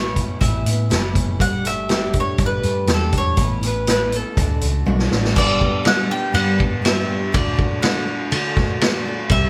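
A woody, picked mandolin carries the melody over a shimmering, octave-doubled twelve-string acoustic guitar, a slightly broken-up lo-fi electric guitar riff, a round, punchy hollow-body bass and an up-front vintage drum kit with dark cymbals, whose fill at 4.9 seconds leads into a new section at 5.4 seconds in this warm, open-road folk and heartland rock excerpt at 121 BPM, played live in one room with light reverb.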